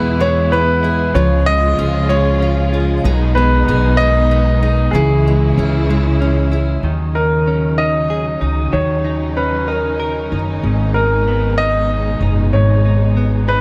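This excerpt of dramatic, aching pop in G# minor at 63 BPM in 6/8 opens with an intimate, up-front concert grand piano carrying the melody with long sustain and tape echo. Beneath it sit a woody, thumpy pizzicato upright bass, a clean, scooped electric guitar with analog chorus, and a bowed string section whose chords glide with vibrato and portamento. A full-bodied jumbo acoustic guitar picks arpeggios, finger squeak audible, until 7.4 s, while the harmony moves to D#m7 at 6.8 s and settles on G#madd9 at 10.6 s, all in light studio reverb.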